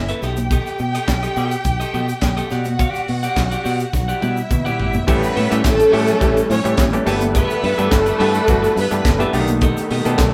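A close, expressive violin section with vibrato and portamento carries a second line in this sultry, glamorous disco excerpt over a bright, direct fingered electric bass, a tight, up-front funk kit with a high-tuned snare, handclaps and a fill at 3.9 seconds, a compressed, slightly broken-up picked guitar in spring reverb, a grainy egg shaker and very quiet ringing congas, until a mellow, stringy clav and a dark, lush string section holding soft-attack chords in the background arrive at 5.1 seconds, the band playing together in one room with a wet studio reverb.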